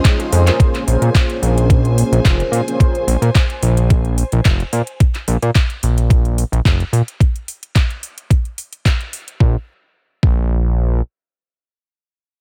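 A thumpy, tape-warm electronic kick drives this sensual, groovy nu-disco excerpt at 109 BPM in Bb minor, joined by a fat, detuned analog bass with an evolving filter sweep, a house kit of layered handclaps and metallic hi-hats, and a brief opening drum fill. Round, dark synth brass with chorus, cassette tape coloring and digital delay, a bright bowed string section in the background, and a lush, wave-folded unison pluck playing arpeggios all pump against the beat over a Bbm9 chord until the harmony drops away at 5.0 seconds.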